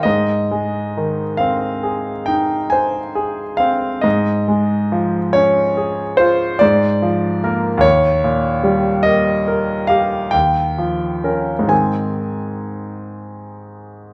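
A concert grand piano opens on an Ab major chord, its tone clear and natural with a deep bass and an up-front presence. This romantic nocturne for solo piano moves slowly at 46 BPM in dotted quarters, its 9/8 metre felt in uneven beats and shaped by rubato. The mood is dreamy and nostalgic as the harmony passes through Db over Ab at 4.0 seconds, Bb7 over Ab, and then Eb7 and Eb9 before settling back on Ab at 11.7 seconds. The piano spans Eb2 to Ab5 and sits in a moderate recital hall reverb that lends a sense of space. This short excerpt, cut from a longer piece, stays within a single section for its 14.1 seconds.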